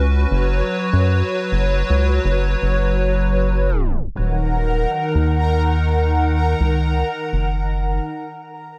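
The rubbery square bass stands out most, bouncing up front with a dark, resonant filter pluck from the low register as this IDM excerpt moves at 124 BPM in 4/4 with a light swing on the sixteenths. Alongside it, a hollow, flute-like pad holds sustained chords in Eb minor, its slow attack and long release softened by ensemble chorus and a touch of vintage 12-bit sampler grit. The harmony rests on Gbsus4 before a tape stop between 3.7 and 4.2 seconds drags the music down and hands it to Ebm. From 4.4 seconds a bubbling texture of detuned sawtooth enters quietly in the upper register, its random filter steps shimmering through chorus and its own reverb. The whole mix is dreamy and soaked in a lush hall reverb, giving the piece a cerebral, melancholic mood.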